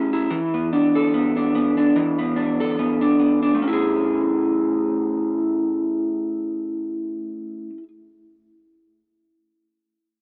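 This indie pop excerpt has a laid-back, sunny mood, moving at an unhurried 73 BPM in 4/4 with a light 55% swing on the sixteenths, in A major and tuned to A4 = 439 Hz. A single picked electric guitar carries the accompaniment from 0.0 to 7.9 seconds, played through a small old amp that gives it a slightly broken-up, lo-fi, compressed character, sitting up front in the mix. Analog chorus and vibrato lend its tone a gentle shimmer, while it ranges from E3 to A4. The harmony rests on an E7sus4 from 0.3 seconds before settling onto an Amaj7 at 3.6 seconds, where a second section begins. A moderate plate reverb with a long 3.5-second tail surrounds the guitar, and the overall production is dark and warm.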